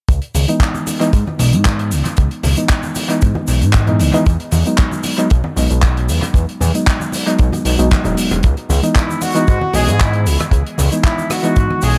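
A fat, thick analog bass sits up front in this sleek, sensual nu-disco excerpt at 115 BPM in C# minor, its sustained sawtooth and square-wave tone detuned and shaped by a moving notch, ranging from E1 to G#2. Alongside it, a tight, dry acoustic kick with a rolled-off top sits prominently, while a damped 70s drum kit adds handclaps, hi-hat, rim click and shaker, its dry sound trailed by dub echo. Very quiet congas, bright with soft hands in a small room, enter at 0.4 seconds. A reedy, worn electric piano, slightly out of tune and heard through its built-in speakers, carries the chords from C#m7 to Emaj9 and back, its clean tone also caught in dub echo. At 9.0 seconds a mellow trumpet section arrives with the melody, punchy with light vibrato in a pop-style ensemble voicing, set into the echo-heavy mix with light reverb and small room ambience.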